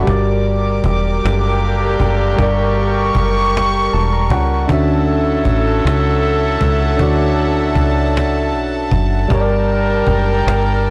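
A slow, intimate six-eight R&B fragment opens on clean tine electric piano with a subtle chorus, sustained chords from a reedy, gut-string studio string section, and a dark, round dub bass that sits punchy and up front with transformer saturation, while a woody cajon played with soft hands comes in at 0.1 seconds. Tight vintage horn stabs with light vibrato join at 1.2 seconds, and the electric piano adds a fill from 3.5 to 4.7 seconds. Light reverb and small-room ambience surround a blown-out, overdriven recording.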